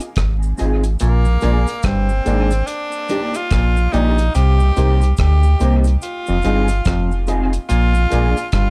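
This serious, laid-back roots reggae excerpt at 72 BPM, with a swung sixteenth feel, opens on a mellow electric guitar with chorus and tape echo. With it come a woody, slightly detuned upright piano stabbing in the background, a dry, deep drum kit of tight kick, hi-hat and rim click, and a faint cabasa. A round sine sub bass sits up front from 0.2 s, and at 1.0 s a raspy, gritty tenor saxophone takes the melody with light vibrato and tape echo over a stringy, overdriven clav riff, as the chords move through Fm7, Bb7, Ebmaj7 and Cm7 in a dark production with light reverb.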